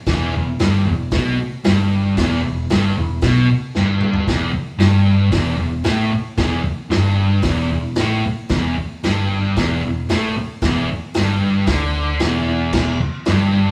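Menacing and swaggering, this straight 114 BPM garage rock cut in E minor puts an up-front, double-tracked fuzz guitar riff over a growly, overdriven picked electric bass sitting in the background and a distant, roomy vintage drum kit with dark cymbals and a punchy kick, all captured live in a stone room with moderate reverb, with a drum fill at 3.8 s leading into the next section of this extract from a longer piece.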